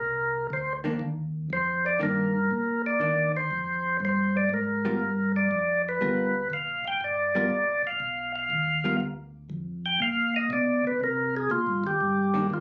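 A percussive tonewheel organ with key click and a slow rotary speaker carries a full, up-front solo melody through this smoky, bluesy, swinging soul jazz organ trio excerpt, set over a round, dark organ bass line also turning on a slow rotary, while a picked, compressed hollow-body electric guitar accompanies from 0.8 to 9.0 seconds and returns briefly at 12.3 seconds, the trio heard through a moderate club reverb as captured on a phone in the room.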